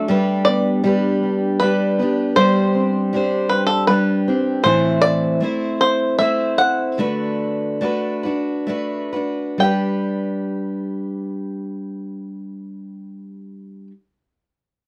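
Warm and gentle, this short acoustic folk passage in G major sways in an unhurried 3/4 at roughly 64-79 BPM, played with a straight feel. A bright, twangy bluegrass banjo carries the melody up front, its fingerpicked tone percussive. Beside it, a picked steel-string acoustic guitar supplies the accompaniment with an auditorium-sized body, a touch of finger squeak audible in the playing. For the first 4.7 seconds, a fingerpicked twelve-string archtop adds shimmering, octave-doubled arpeggios with a boxy, fresh-stringed character. The chords move from G through Csus2/G, Am and D6 before returning to G, and the pace slows between 4.6 and 9.6 seconds as the opening section gives way to a brief second one. Light reverb and the worn, warbling pitch drift of old cassette tape lend the whole a faded, homespun quality.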